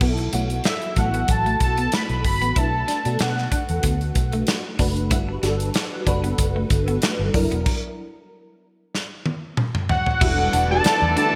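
Polished 1980s jazz-funk pop with an urban, nocturnal mood, moving at 94 BPM in 4/4 with a light sixteenth-note swing, heard as a short cut from a longer piece. A punchy, up-front studio drum kit with gated reverb drives the groove over a dark, foam-muted fingered bass, while a lush, dreamy FM electric piano with a soft pad layer, treated with phaser and ensemble chorus, supplies the chords and a slightly broken-up, twangy electric guitar with analog chorus plays a riff in the background. A fat, detuned sawtooth lead with a sub octave, lush chorus and digital delay carries the melody from 0.7 to 3.8 seconds and returns at 9.9 seconds. The harmony moves through B7sus4, Bm7, Gmaj7 and F#aug7, then the band stops at 7.7 seconds, and a drum fill from 8.9 seconds leads into an Em11 at 10.2 seconds. There a clear, vintage horn section with octave doubling adds a second line, and a very quiet, intimate bowed string section holds sustained chords beneath it. 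The sound is bright 1980s digital production with light studio reverb.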